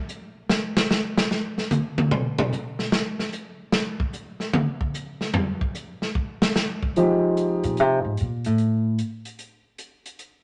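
Jazz piano trio fragment swinging at 149 BPM with a smoky mood, opening on an airy, polished big-band drum solo of hi-hat, punchy kick, medium-tuned snare and toms until 7.0 s, when a natural-toned grand piano sounds a brief phrase over Fm7, joined at 7.6 s by a woody pizzicato upright bass on steel strings taking a short solo, each part up front in a wet club ambience with a softened top end.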